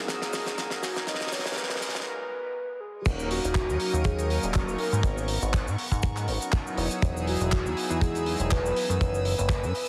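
Nu-disco at 121 BPM with a sensual, groovy swing, this short cut opens on a build-up where a soft, round octave-layered synth lead carries the melody through a filter sweep over a smooth analog pad, a rich chamber string section in the background, a glossy, nasal chorused synth bass, a damped 70s drum kit with fat snare, dark cymbals, handclaps and cabasa, and a very quiet riser, before a break at 2.1 seconds gives way to the drop at 3.1 seconds, where a tight, up-front kick enters and the pumping pad and strings move through D#m7 and G#m11 under a heavily compressed, radio-like sheen.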